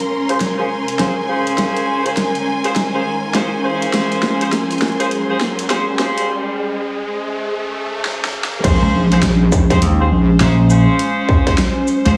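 Glitch hop in Bb minor at 102 BPM with a swung 16th feel, this playful, swaggering passage from a longer piece opens on a build-up, where a warbly, detuned lo-fi pad holds a Bbm9 chord beneath lush bowed symphonic strings and tight vintage jazz-style horn stabs under a filter sweep and delay, all three parts pumping against the sidechain, while an electronic riser climbs alongside them. A dubstep drum kit with a huge snare, bright hats and shaker runs fills before a break at 6.3 seconds, then the drop lands at 8.6 seconds with a distorted, up-front electronic kick and a heavy, saturated square-wave wobble bass, while a punchy, amped vintage slap bass joins briefly at 8.8 seconds. The mix sits in a moderate hall reverb and carries a heavily compressed, radio-like sheen.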